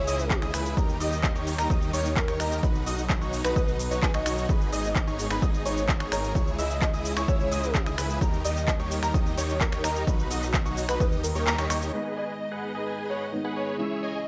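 Euphoric and anthemic, this festival progressive house excerpt opens in full drop, with a punchy, up-front electronic kick and a crisp pop kit of finger snaps, handclaps, hi-hat and shaker driving under a huge, thick supersaw riff, a detuned saw bass, background strings and clear grand piano arpeggios, these four pumping with sidechain. An airy, dreamy lead carries the melody through chorus, tape echo and vintage 12-bit sampler grit, while the grand piano's short, vintage sustain rings through tape echo. At 11.9 seconds the kick has already dropped out and a soft, felt-muted upright piano with audible action noise takes over the accompaniment as a filter sweep moves across the supersaw.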